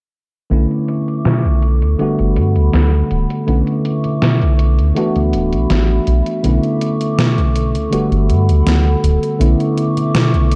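Vaporwave in B minor at 81 BPM, this short excerpt from a longer piece drifts with a woozy, melancholic air over a straight 4/4 pulse. A worn, slightly out-of-tune tine electric piano carries the accompaniment up front, its tone bathed in lush chorus and tape echo as it moves through Bm11, Gmaj9 and D69 chords. Above it, a warbly, nostalgic pad holds sustained chords with a slow attack and long release, softened by chorus, built-in reverb and a vintage 12-bit sampler grit. The chorused synth bass sits loudest in the mix, glossy and retro with a plucked filter edge and tube saturation. A gated 80s digital drum machine plays hi-hat and snare, overdriven and re-recorded in a large room, with gated reverb on the snare and a filter sweep across the drums from 0.5 to 10.6 seconds. The whole production feels dark and cassette-worn, wrapped in digital ambience.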